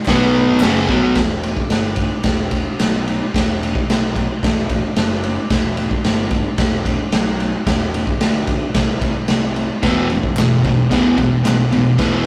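A straight four-beat groove drives this raw, swaggering garage rock fragment, carried by a gritty drum kit whose punchy kick, medium-tuned snare, hi-hat and ride cymbal sit up front with a dark, rolled-off top and the ring of a bright stone room. Underneath, a picked electric bass growls the whole way through, overdriven and amped with a fuzzy, tube-saturated punch. A bright, double-tracked fuzz guitar riff opens the piece over B5 and F#sus4 before falling silent at 1.2 seconds, leaving bass and drums to move between E5, Em and brief chordless breaks. The distorted guitar returns at 9.8 seconds on Em. Crisp, dry group handclaps sit in the background, appearing at the very start and again near the end. The whole recording has the rough, lightly reverberant feel of a rehearsal room.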